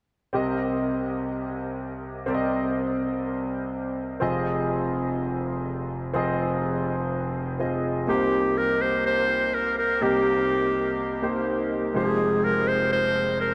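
A lightly swung 124 BPM pulse in 4/4 drives this urgent, dramatic pop fragment in C minor: an intimate concert grand piano with deep bass, audible action noise, long sustain and analog chorus plays Cm7 and Fm7 accompaniment from 0.3 seconds, and at 8.1 seconds a clear, close-miked clarinet with delay enters with a classical-style solo melody, both parts up front in a dreamy mix soaked in huge ambient reverb.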